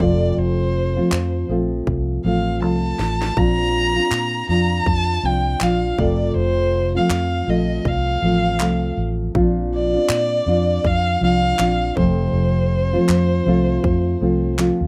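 Sunny and heartfelt, this short fragment of acoustic pop moves at 80 BPM in 4/4 with a swung sixteenth feel, as a dark, woody solo violin, bowed with vibrato and placed up front, carries the melody over an up-front, full-bodied, thumb-plucked nylon-string guitar, a round, foam-muted vintage fingered electric bass, and a layered electronic house drum kit with a punchy kick, cracking snare and handclaps that plays a fill at 2.6 s, while the harmony shifts between F and Bbadd9 in a moderate studio reverb.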